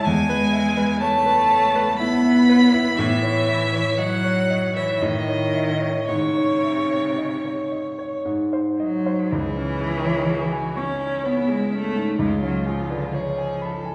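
Cut from a longer piece, this slow, yearning and melancholic romantic movement for piano trio in a rubato three-four opens with the three players together: a smooth, bowed violin with even vibrato carries the melody, a rich cello sings a second line with soft attacks and expressive portamento, and a warm grand piano supplies the accompaniment, the trio set in a reverberant recital hall and moving into a new section at 9.3 s.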